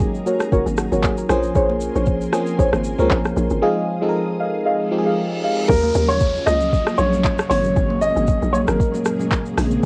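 A soulful, hypnotic amapiano groove at 116 BPM in Eb dorian opens with a brief note from an intimate baby grand piano, alongside a biting, warbling FM electric piano with chorus, dark cello-like string machine chords that pump under sidechain, a hollow, bouncy log drum bass and a smooth, tape-softened R&B kit of soft kick, hi-hat, handclaps, rim click and shaker, all swung on the sixteenths. Just after, deep, mellow chord stabs with chorus and tape echo join, along with very quiet, ringing, high-tuned congas. The harmony moves through Ab9sus4, Bbm9 and Fm7 before a reverse cymbal and downlifter sweep in from 4.9 seconds, leading into the drop at 5.7 seconds. There the electric piano and stabs stop, and the grand piano returns up front with a melody carrying audible action noise and long sustain, colored by cassette tape and tape echo, over Ebm11 and Ab9sus4. Light reverb and a hazy home-cassette sound frame this short cut from a longer piece.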